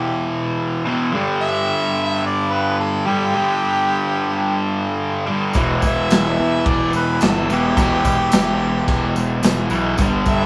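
Harmonica and fuzz guitar open together in this raw, menacing garage rock excerpt, moving at 108 BPM in a straight 4/4 in E minor. The harmonica carries the melody with a clear, close-miked tone, light vibrato and scooped notes, its overdrive adding bite, while the double-tracked guitar drives a low, compressed riff that sits up front with a bright, distorted edge. The harmony shifts from E minor to G5 and returns to E minor at 5.6 seconds, where the rest of the band arrives. A jingly, dry tambourine slips in just before, at 5.5 seconds, sitting quietly in the mix, and then the fuzzy, round picked electric bass enters alongside an acoustic drum kit with a punchy kick, medium-tuned snare, crash cymbal and dark, gritty, rolled-off character. The whole band sounds as if playing live in a small room, with moderate reverb lending a close, rough-edged feel.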